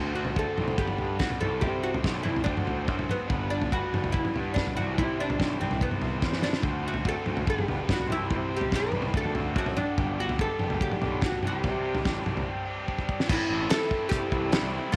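A muffled, lo-fi drum kit with a fat snare and dark cymbals sits up front in this carefree, upbeat indie rock excerpt at 144 BPM, with fills around 6.2 seconds and a break at 12.5 seconds. Over it, a bright, woody oud carries the melody while a double-tracked, overdriven electric guitar plays a riff through spring reverb, and a growly fuzz bass holds the low end in the background, moving through D7, G and Cmaj7 changes. At 13.3 seconds the chords shift to Am and C as a very quiet, detuned sawtooth pad enters, joined by barely audible crisp group handclaps, all in a small, lightly reverberant room.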